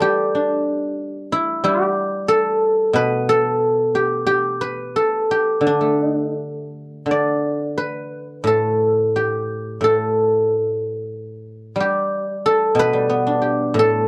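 The rhythm flows freely in rubato, loosely anchored to a 4/4 pulse that hovers between 80 and 96 BPM. This short fragment of Chinese traditional solo plucked-string music sits in the D zhi mode and carries a pastoral, elegant mood. A lone acoustic guzheng, played with fingerpicks, carries the whole 14.1 seconds, ranging from A2 up to D5 with a mellow, silvery tone whose notes ring out. The passage falls into two sections, with the second beginning at 7.1 seconds. The guzheng sits up front in a dry, close 1970s-style studio sound, touched only by light reverb.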